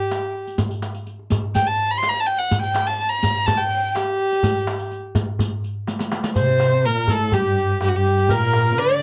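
A single violinist leads this stately, festive Arabic maqam ensemble piece, played up front with an intimate sul tasto tone, an airy bow, soft attacks and light vibrato. Beneath it, a darbuka with a clay shell and natural skin gives a warm, live-room pulse in a straight 4/4, while a riq adds bright, compressed and saturated jingles. A drum fill at 5.9 seconds leads into a new section at 6.4 seconds, where a dark cello section enters up front with a second line, expressive vibrato and a smooth top. At the same moment, a reedy, nasal and breathy melodica joins in the background. Close, detailed microphones and light reverb keep the sound present in this short cut from a longer piece.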